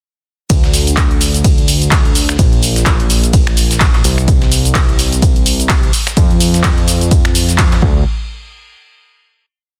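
A four-on-the-floor kick drives this bittersweet, soulful piano house piece at 127 BPM in 4/4, with a 58% swing on the sixteenths, in D minor tuned to A4 = 436 Hz. The electronic kick is the loudest part, punchy and tape-warm, while an analog drum machine supplies programmed closed and open hats, cabasa, claps, finger snaps and ride around the backbeat. Beneath them, a very quiet sampler-style soul kit adds a gritty, compressed looped breakbeat with edits, its hi-hat, shaker and fat snare lending a dusty texture. A thick, detuned sawtooth bass with a fast attack and decaying notes sits up front between Bb1 and F2, following the chord rhythm and pumping from sidechain compression. The track is a single drop from 0.5 to 8.1 seconds, then a final hit that lasts until 9.8 seconds, with very little reverb in a dense, heavily limited modern master.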